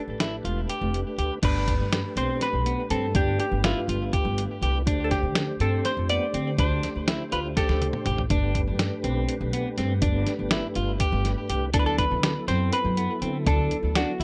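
A clean, dark hollow-body jazz guitar melody with delay opens alongside a soft, flute-like tonewheel organ turning on a slow rotary speaker, soon joined by a woody pizzicato upright bass, a slightly broken-up fingered electric guitar spinning delayed arpeggios, and a muffled, compressed sampler-style drum kit with a thumpy kick in this intricate, bright progressive instrumental in 7/8 at 244 BPM (eighths) in G major, where kick and snare briefly drop out at 0.7 seconds, a drum fill lands at 7.6 seconds, and the jazz guitar returns at 11.7 seconds in light reverb.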